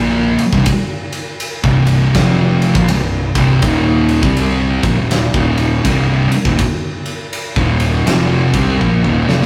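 An up-front, distorted fuzz guitar riff drives this sludgy, hypnotic stoner-doom excerpt with a swung 4/4 feel, shifting from C5 to Eb5 at 3.6 seconds, joined by a very quiet, dark second guitar and an overdriven fingered bass in the background, while a big acoustic kit with punchy kick, fat snare and ride cymbal enters at 0.4 seconds and closes with a fill at 8.8 seconds, all captured in a rough rehearsal-room recording with moderate reverb.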